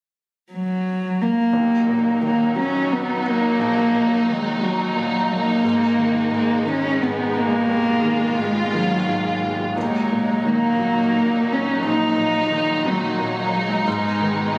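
A dark, woody solo cello opens this melancholic, dramatic pop excerpt at 0.5 s, its bowed vibrato melody up front in a slow 6/8 at 58 BPM in Eb minor. At 1.5 s a clear concert grand piano, intimate with audible action noise and deep bass, enters in accompaniment alongside a lush symphonic string section holding sustained chords with expressive portamento, as the harmony moves between Ebm and Abm. The sound sits in moderate scoring stage reverb with small room ambience, caught on a phone in the room with a club-like reverb, and it is cut from a longer piece.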